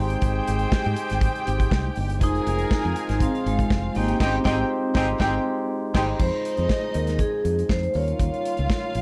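Lightly reverberant and polished, this danceable, glamorous disco cut in F minor moves at 120 BPM in a straight 4/4, with an up-front, dark-toned studio drum kit and a round fingered electric bass driving it over a clean tine electric piano. A woody string section carries a second line with light vibrato while a very quiet, mellow French horn section holds soft-edged sustained chords and a pop-style horn section adds stabs until 6.1 seconds, joining a band accent from 4.2 seconds. From 2.2 seconds a vibraphone with soft mallets takes the melody, its metallic, ringing, airy tone shimmering with slow motor vibrato as the harmony moves through Abmaj7, Fm7 and Eb7.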